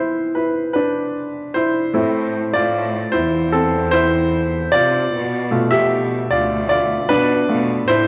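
In a straight 4/4 at 76 BPM, this emotional, melancholic pop ballad in A minor opens with a clear, up-front baby grand piano playing alone, its short sustain colored by cassette tape, until a biting, vibrato-laden bowed cello section takes the bass line at 2.0 s as the chords move from E to Am to G7, the whole heard through a wet spring reverb and small-room ambience of a home cassette recording.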